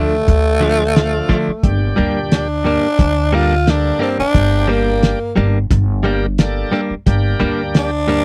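A growling tenor saxophone opens this mournful, soulful blues fragment, playing a raspy, breathy solo with vibrato that sits close-miked and up front. Alongside it from the start, a clean, direct-recorded electric guitar plays compressed, picked stabs, and an upright bass gives a woody, dark pizzicato line with a growly edge. A cloth-damped drum kit enters at 0.3 seconds with hi-hat, a fat snare and a tight kick; its muffled, saturated sound is rolled off at the top and stands a little louder than the other parts. At 0.6 seconds a bright tonewheel organ adds a full, shouting accompaniment, lightly overdriven through a slow rotary speaker and set lower in the mix. The straight-eighth groove and the dry, close sound of a 1970s-style studio with light reverb give the music an intimate, lo-fi character, and it is cut from a longer piece.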